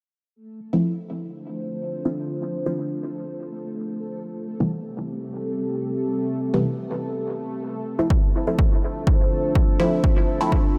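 A straight 4/4 pulse at 124 BPM drives this nocturnal, hazy dub techno fragment in D minor, where a detuned, sub-octave analog pad holds dark Dm7 and Am7 chords through chorus, phaser and a filter sweep, muted sawtooth chord stabs with a plucked filter and moving notch trail off into dub echo, a resonant, bubbling stepped-filter texture drifts beneath in its own reverb, all three sidechain-pumping, until a punchy analog kick drum lands up front at 8.1 s, the whole set in a light reverb.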